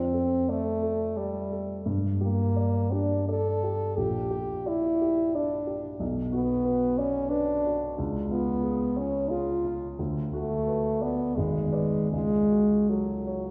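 A smooth-topped French horn sings a solemn, yearning melody up front over dark, mellow grand piano accompaniment in this romantic classical duo, moving in a rubato 3/4 at roughly 76-93 BPM, settling into F# minor from 6.0 seconds and heard within a wet scoring-stage reverb.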